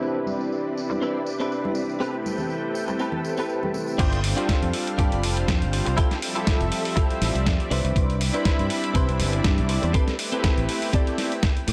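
A swung 121 BPM nu-disco groove in A minor opens with bright, soft-handed bongos, tambourine and congas under a filter sweep on the twangy clean electric guitar riff, a smooth, warbling analog pad with chorus, slapback echo and sidechain pumping, and lush string-machine chords in the background, before the drop at 4.0 s brings in an up-front fingered electric bass, a gritty sampler-style kit of crash, hi-hat and snare, and a thumpy electronic kick, giving this sensual, dark, lightly reverberant excerpt its pulse over chords moving from Cmaj9 through G7sus4 and Fmaj9.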